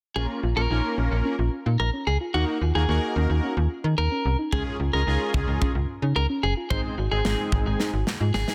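This wistful yet upbeat synth-pop excerpt at 110 BPM in straight 4/4 opens at 0.2 s with a snappy, metallic FM slap bass up front, a fat, detuned analog synth brass with chorus and vibrato, a soft, round background pluck playing arpeggios through chorus and digital delay, and a clean, picked electric guitar second line with its own delay, all moving through Bbm, Ebm, Db and Ab before a polished, airy studio drum kit with a punchy kick and medium-tuned snare joins at 4.5 s and plays a fill from 7.8 s, the whole set in light small-room reverb with a dense, heavily limited modern master.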